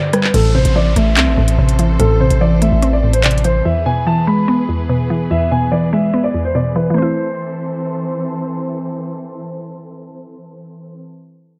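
Drill hip hop in A minor at 145 BPM with a half-time feel, this ominous, menacing excerpt sets a dark, mellow piano melody over an up-front woody synth pluck and lush bowed strings, while crisp-hatted drums with handclaps and rim clicks, an aggressive distorted 808 bass and a background downlifter drop out between 3.5 and 3.7 seconds, leaving the piano to stop at 8.2 seconds and the pluck and strings to carry on to about 11 seconds, with a filter sweep running from 0.3 to 7 seconds and light digital ambience throughout.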